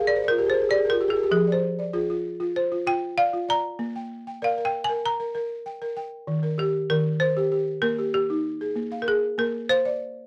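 A buzzing, woody balafon opens with a fill and carries a solo melody in the first 6.3 seconds over a second balafon's arpeggios struck with hard rubber mallets, both up front in a dry, close 1970s-style studio sound with moderate reverb, as this reflective, hypnotic West African traditional piece, cut from a longer performance, moves at 97 BPM in a straight 4/4 through Bb and Fm before turning to Eb for its second section.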